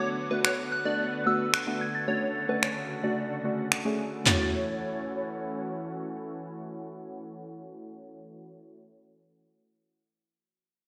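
This upbeat, euphoric dance-pop excerpt opens with a soft, pure FM synth bell ringing high above a plucky, detuned unison lead, both shimmering through phaser and digital delay. Underneath, round analog keys with a filter sweep and a thick, slow-blooming sawtooth pad carry the chords from Bm7 to Dmaj7, then settle on A6 at 4.3 seconds. A punchy analog drum machine sits up front from 0.4 seconds, its finger snaps, handclaps, tape-tinged snare and toms bathed in gated reverb, and it drops out at 4.4 seconds. The catchy lead stops at 5.9 seconds, leaving the bell, keys and pad to sound together. A lush hall reverb and glossy 1980s-style digital production give the whole fragment a bright, spacious gleam.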